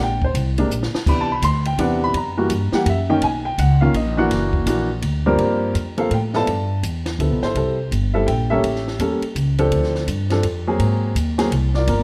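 A brisk 3/4 swing at 167 BPM drives this smoky, late-night jazz piano trio fragment, its eighth notes lightly swung. The upright piano carries the melody with a woody, polished, up-front tone and short sustain, ranging from G2 to C6 and taking a solo turn over the opening chords before the music settles into G minor at 5.4 seconds. The pizzicato upright bass sits close and present beneath it, its steel strings giving a warm, woody low end that reaches down to F#1. A compact cocktail kit with dark cymbals, a high-tuned snare and a tight kick sits further back in a natural, booth-like sound, slipping in a short fill at 0.7 seconds. The harmony moves through rich extended chords such as Cmaj9, Bmaj9#11 and Gm11 before landing on Ab9. A moderate studio reverb and a dusky mix, with a faint mains hum beneath it, frame the trio.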